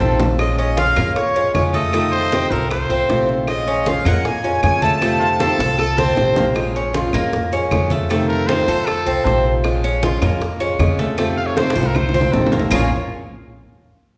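Latin Cuban son and guajira with a danceable feel, cut from a longer piece, where a reedy, up-front accordion carries the melody from 0.4 to 6.1 s over a raspy, growling trumpet second line, metallic double-strung tres arpeggios, boxy picked archtop guitar and a thumpy, woody pizzicato upright bass, while low-tuned congas, tight high-tuned bongos and dry claves sit in the background with drum fills marking the sections, the ensemble set in the reverberant air of a recital hall.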